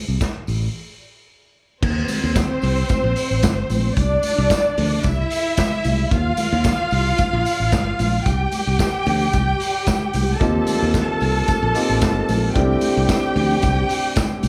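Danceable and celebratory, this disco excerpt moves at 112 BPM in a straight 4/4, opening with a filter sweep and a brief break before a rich, bowed string section with soft-attack vibrato enters up front at 1.8 seconds over chords that shift between Eb and C colors. A bright, growly fingered electric bass drives the groove alongside a vintage acoustic drum kit with a punchy kick, medium-tuned snare, dark cymbals and a pumping small-room sound, while high-tuned, ringing congas and a jingly, dry tambourine sit in the background. At 10.4 seconds a clear, intimate grand piano joins as accompaniment, its action noise audible and its sustain long, all set in light studio reverb.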